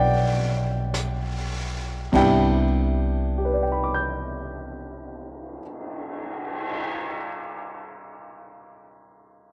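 Swung eighths at a slow 48 BPM in 4/4, easing back over the first 2.1 seconds, carry this romantic, intimate jazz ballad excerpt in C major, where an up-front baby grand piano with short sustain moves from G7b9 to Cmaj9, a woody pizzicato upright bass sits beneath until 5.6 seconds, and a brushed kit with dark cymbals, a high-tuned snare and a boomy kick, tinted by cassette tape, joins at 0.9 seconds, all framed by light small-room reverb on a homespun cassette recording.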